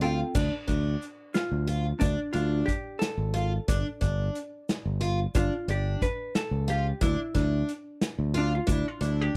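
Dry and up front, this brooding, intricate progressive instrumental in D dorian moves in 5/8 at 180 BPM in eighths, with a dark, compressed hollow-body jazz guitar opening on a brief fill and then soloing from 0.3 seconds over Dm, Gsus2 and Dm, while a shimmering, octave-doubled twelve-string acoustic guitar picks arpeggios with audible finger squeak, a growly, overdriven fingered electric bass holds the low end, a vintage drum kit with a punchy kick, medium-tuned snare and rolled-off top plays in a pumping room, and a grainy, distant egg shaker sits very quietly from 0.4 seconds.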